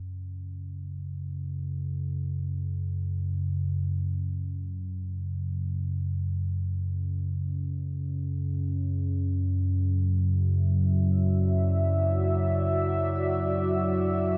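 Dark ambient drone in free time, this excerpt from a longer piece feels unsettling and desolate. A deep rumbling drone sits up front from the start, its ominous, wave-folded tone sustaining low in the register with a slow attack and long release. At 9.9 seconds a deep, moody pad enters with sustained chords, its detuned unison and sub-octave weight giving an evolving, mellow body that is treated with chorus and shimmer reverb. The harmony starts from an F#5 chord and moves to Dadd9/F# at 9.0 seconds, the drone anchoring the bottom while the pad spreads higher above it. Both parts carry on until 14.4 seconds. The whole sits in a huge, wet reverberant space with a long decay of 7.7 seconds, lending the sound a vast, cavernous feel.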